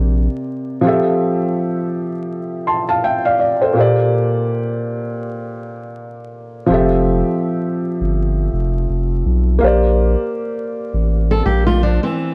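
A 58% swing on the 16ths drives this mellow, cosy lo-fi hip hop excerpt at 82 BPM in 4/4 and F major, where a soft, intimate felt-muted upright piano, dulled by cassette tape and a low-pass filter, moves between Bb69 and Fmaj7, a deep, thick saturated sub bass with a fast attack sounds only briefly at the opening before returning at 6.7 seconds, and a fingerpicked flamenco guitar with fresh strings enters at 11.3 seconds, the whole mix set in a small room with worn, warbling tape, vinyl crackle and drifting pitch.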